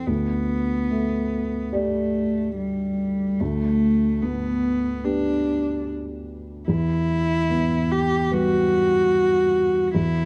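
A rubato 4/4 pulse at 73 BPM carries this melancholic, longing neoclassical piece for piano and strings in E minor, tuned to A4 = 439 Hz, where a felt-muted upright piano with a mellow, thick-felt, vintage tone plays an intimate accompaniment through Dsus4, G/D and Em while a single close, bowed cello adds a warm second line sul tasto with an airy bow, soft attack and light vibrato, both parts up front for the full 10.3 seconds of this excerpt inside a dark production with light reverb.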